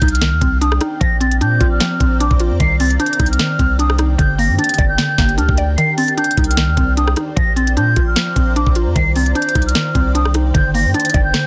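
A dense, heavily limited modern master with a digital ambience frames this eerie, brooding half-time trap excerpt. A hollow, airy concert flute with vibrato carries the high melody over a woody, round FM synth pluck with chorus, while a cloudy granular pad with its own reverb enters at 0.6 seconds to hold blurred sustained chords moving through Cmadd9, Bbadd9 and Gm. Beneath, a deep sine 808 bass rings out long beside an up-front electronic trap kit of knocking kick, sharp snare, rim click and crisp hi-hats, the kick dropping out between 5.8 and 6.2 seconds.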